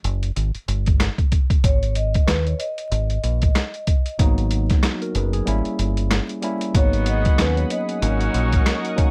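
A gritty, compressed boom-bap drum kit sets a swung 94 BPM groove in 4/4, with a thumpy kick, a high-tuned snare, rim clicks and hi-hat sitting up front alongside a round, dark fingered electric bass in G# minor, giving this brief cut from a longer hip-hop track a reflective yet tough mood. A soft-mallet vibraphone enters at 1.6 seconds with a mellow, ringing melody touched by delay. At 4.2 seconds a worn, slightly out-of-tune tine electric piano joins with cassette-tape colour and plate reverb, moving through chords such as G#m7 and Gdim7. The later section brings a lush, detuned sawtooth pad with chorus at 6.7 seconds, while punchy, edgy saxophone section stabs with delay cut in just after. The room is dry, and vinyl crackle runs beneath the whole sound.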